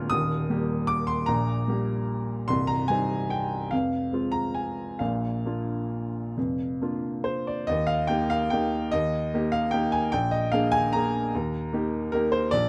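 A warm, woody upright piano plays alone, close and up front in a dry, detailed sound, carrying a wistful, elegant classical waltz in E-flat major with a rubato feel in 3/4 between 128 and 163 BPM, moving from E-flat through C minor, F minor and B-flat before a new section at 7.7 seconds returns home through B-flat seven to E-flat, all in a short cut from a longer piece.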